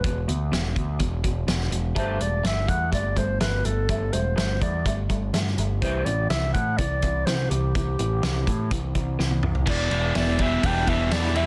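A straight 4/4 pulse at 124 BPM drives this bittersweet, anthemic quiet-loud alternative rock excerpt, with a loose, roomy indie drum kit of dark cymbals, fat snare and tight kick alongside a growling, overdriven picked bass up front. A mellow, classical-style solo clarinet carries the melody over twangy, slightly broken-up guitar arpeggios sitting in the background with an ensemble chorus, as the chords move from E5 through Gsus2 to C6. After a drum fill from 9.2 seconds, a compressed, overdriven guitar riff comes in at 9.7 seconds over an Em7 chord, all under light studio reverb and a dense, heavily limited modern master.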